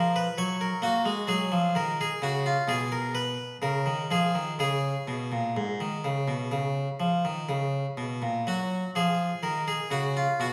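A bright, airy solo harpsichord, plucked on a single set of strings in French style and sitting up front in a stone room's wet reverb, unfolds a radiant, serene baroque-style suite movement in a flexible rubato 4/4, with its harmony moving from F# through a lush Bmaj13 and settling back on F# near 8.5 seconds in this short excerpt from a longer piece.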